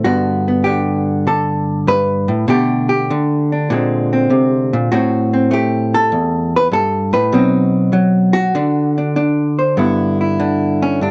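The recording sits in a moderate club-sized reverb with a dark, warm production, placing a single instrument up front. This is a playful, swinging piece of solo jazz at 99 BPM in 4/4, with eighth notes swung at 68% and a rubato looseness to the time, tuned to A4 = 442 Hz. An electric hollow-body jazz guitar carries everything alone, its clean, picked tone compressed and dark, ranging from E2 up to C5. The harmony moves from Gmaj9 through Gadd9/B, A#9, Am7, B and D7 before settling on G6. At 9.8 seconds the music turns to a new section, where the guitar takes a solo until this short fragment of a longer piece ends at 11.1 seconds.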